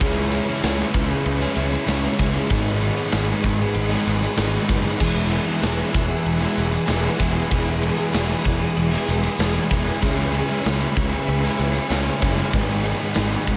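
A hazy, dreamy slice of shoegaze and dream pop rock, this short excerpt moves at 96 BPM in a straight 4/4 in E major, cycling through C#m7, G#m7 and Eadd9 chords. A big rock drum kit sits up front with a punchy kick, medium-tuned snare and bright crash and ride cymbals, while a faint, jingly tambourine adds shimmer underneath. A fuzzed, overdriven picked electric bass anchors the low end, and a raw garage guitar plays a riff with overdrive and a subtle chorus. Behind it, an overdriven semi-hollow guitar carries its own riff in the background, its hollow-body tone trailed by reverse reverb. A very quiet vintage string machine holds lush, sustained sawtooth chords with a soft attack and ensemble chorus, and the whole mix sits in a small room.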